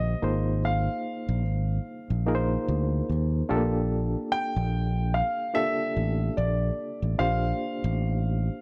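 The rhythm sways in an easy 4/4 with a lazy sixteenth-note swing, giving this brief cut from a longer lush 1970s-style soul piece a smooth, bittersweet glow. A fingered electric bass sits up front, direct and amped, grounding the low end from the start. A barky, reedy electric piano carries the accompaniment through its own built-in speakers, lightly overdriven and shimmering with a fast tremolo. Over it, an intimate grand piano sings the melody in a high, narrow range, its natural tone carrying audible action noise. The harmony moves from Ab69 at 0.2 seconds to Gm7 at 3.5 seconds, all set in a small room with light reverb and a dark, warm production.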